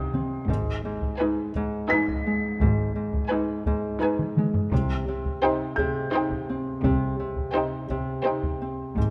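This cinematic suspense cue, cut from a longer score, moves in an ominous, tense triple metre. Two violin sections play sul tasto with a soft attack, one carrying the melody and the other a second line, both pure and floating. Beneath them a dark viola section holds the accompaniment on a single note with light vibrato, and a bright, ringing Celtic harp sits up front with a thumb-plucked riff. A felt-muted upright piano adds mellow, intimate texture high in its register, its action noise audible. At 0.5 seconds a rich bowed double bass section and a cello section with light vibrato enter in the background. A heavy-sticked taiko ensemble in a small room plays along, with a drum fill at 4.2 seconds before the harmony shifts from Abm to Cm, all captured with close, detailed microphones and light reverb.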